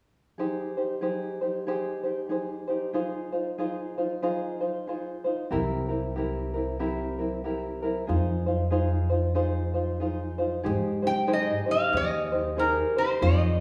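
Hawaiian music with a dreamy, languid mood and a gentle swing, heard in a short passage cut from a longer piece. A light, thumb-plucked tenor ukulele opens the accompaniment at 0.4 seconds, a woody, thumpy upright bass with steel strings enters in pizzicato at 5.5 seconds, and a metallic, nasal lap resonator guitar, played with fingerpicks and slide, takes the melody up front at 11.1 seconds. Everything sits in a resonant recital-hall reverb with the ambience of a church or concert hall.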